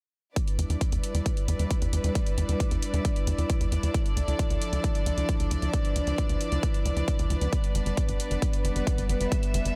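Uplifting trance at 134 BPM, this bittersweet, driving excerpt from a longer piece sets a soft-attack, sul tasto string section holding sustained Em7, Dmadd9 and G chords against a punchy, layered electronic kick that sits up front and an analog-flavoured electronic hi-hat. A tight, nasal sawtooth-and-square sequencer bass with fast, decaying filter plucks drives underneath, and both it and the strings breathe with sidechain pumping. A filter sweep runs through the bass from 0.4 to 9.8 seconds, while digital ambience surrounds the intimate, lightly vibratoed bowed ensemble.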